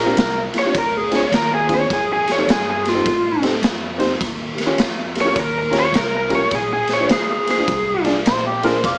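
Swaggering and laid-back, this electric blues shuffle sets a lo-fi, overdriven lead guitar from a small cranked amp up front on the melody from 0.6 to 8.1 seconds, framed by brief bursts of amplified, gritty harmonica with slapback echo, tongue slaps and scooped notes. Beneath it sit a vintage grand piano with audible action noise, a woody, growly pizzicato upright bass, and a punchy, saturated garage drum kit of kick, snare and ride in a bright stone room, with the mix carrying a small-speaker tone.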